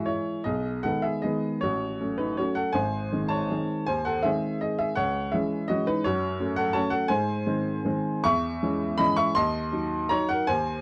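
This is a classical piano waltz in 3/4, with a bittersweet, nostalgic mood and a rubato feel that lets the pulse breathe freely. A solo upright piano carries the whole piece from 0.0 to 10.8 seconds, ranging from G#1 up to C#6. Its tone is woody, smooth and vintage, and it sits up front in the mix. The harmony moves from G#m/B, F#m/A and G# to C#m, F#m and G#, then closes on C#m/E and Cdim/Eb. The production is dark and warm, with light reverb, and the passage is cut from a longer piece.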